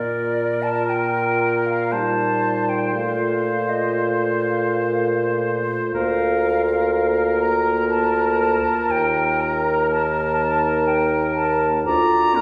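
In a rubato 3/4 at 61 BPM with uneven beats, this serene excerpt of a slow romantic wind-quintet movement in Bb major sets an airy, vibrato-touched silver flute melody with a soft attack over a distant, roomy oboe second line, a punchy French horn accompanying alongside a smooth-topped clarinet in the background, and a mellow bassoon bass up front, all bathed in wet recital-hall reverb.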